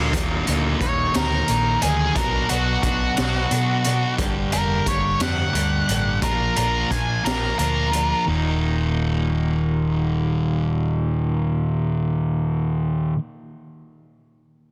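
A sludgy, overdriven guitar riff and a dark, round hollow-body bass open this brooding, angsty alternative rock excerpt. It moves slowly at 59 BPM in a straight 6/8, in E-flat harmonic minor, with the chords cycling Ebm, Bm, Gm and Bb before returning to Ebm. A raw garage drum kit, with a high-tuned snare, boomy kick and a gritty, saturated sound, joins almost at once beside a bright, twangy clean guitar whose compressed arpeggios sit in the background with tremolo and analog delay. From 0.8 seconds a dark octave-fuzz lead guitar plays an up-front solo melody over the riff. At 8.1 seconds the drums drop out, and the lead stops shortly after, leaving the heavy riff, bass and arpeggios to carry the closing passage. A light small-room reverb surrounds the parts, and the master is dense and heavily limited.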